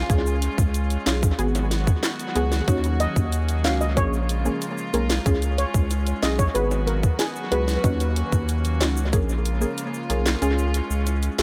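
Sultry and tough, this dancehall excerpt in Eb minor moves at 93 BPM in a straight 4/4, built on a saturated, deep sub bass and an up-front electronic drum kit with a tight kick, sharp snare, handclaps and hi-hat, while reedy, gut-string studio strings hold sustained chords with sidechain pumping beneath nasal, detuned chord stabs carrying chorus and dub echo. A shimmering steel pan melody, played with soft rubber sticks, appears from 3.0 to 7.7 seconds over a cycle of Db, Abm7, Ebm7 and Bbm7, as bright, close egg shaker and timbales sit in the background. The echo-heavy mix has light small-room reverb, with dub echo trailing the drums, stabs, percussion and pan, and the kick drops out at 10.4 seconds.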